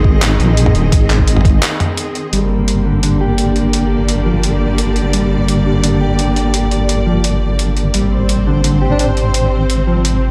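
A deep, dark wobble bass with chorus sits up front in this heavy, tense half-time drum and bass excerpt at 171 BPM in G phrygian, beneath a lush bowed string section whose sustained chords pump against the sidechain. A thumpy, overdriven electronic kick opens the passage and stops at 1.5 s, while a gritty, pitched-down boom bap kit of handclaps, hi-hat and toms plays on, and a clean, fingered electric guitar enters at 2.3 s with mellow arpeggios roughened by 12-bit sampler grit, low-pass filtering and delay. Near the close, a brief jazz-style alto saxophone note with vibrato and delay surfaces in the background, and the whole mix is dreamy and soaked in plate reverb.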